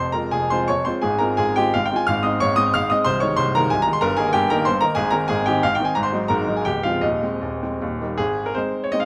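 A clear, polished baby grand piano plays alone and up front in this brief classical excerpt, a romantic triple-time dance in 3/4 with dotted rhythms and a rustic, proud character. The tempo moves freely with rubato between 145 and 202 BPM, spanning C1 to F6 as harmony drifts from F minor into A-flat major by 4.0 s and closes on A-flat at 8.2 s. Close, detailed microphones capture the present tone, set in a moderate recital hall reverb.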